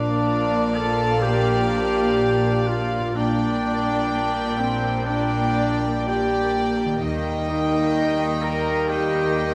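Classical, a serene and lyrical slow romantic movement for symphony orchestra at 63 BPM in 4/4, taken with rubato over a Bb, Gm/Bb and Eb progression in this 9.5-second fragment of a longer piece. A rich, floating violin section carries the distant sul tasto melody, with second lines from a very quiet large flute ensemble, a solo oboe with light vibrato, a roomy clarinet in the background and a smooth-topped second violin section. Around them, a dark, woody viola section accompanies, a mellow French horn section and a bright, very quiet trombone section hold sustained chords, a dark trumpet section adds stabs, a ringing concert harp plays soft arpeggios, and cello and double bass sections anchor the bass, all bathed in a wet scoring stage reverb.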